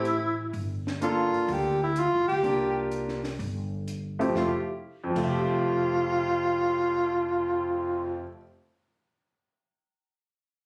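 A breathy, whispered tenor saxophone with vibrato and scooped notes leads this playful, sophisticated fragment of swinging small-group jazz at 126 BPM in F major, sitting up front alongside a clear concert grand piano and a woody, growly pizzicato upright bass, while a dark, compact cocktail drum kit with a high-tuned snare and punchy kick plays from 0.1 to 5.2 seconds as the harmony moves through Gm9 and C9sus4 to settle on Fmaj7 at 4.3 seconds, the recording sounding as if captured on a phone in the room with light reverb.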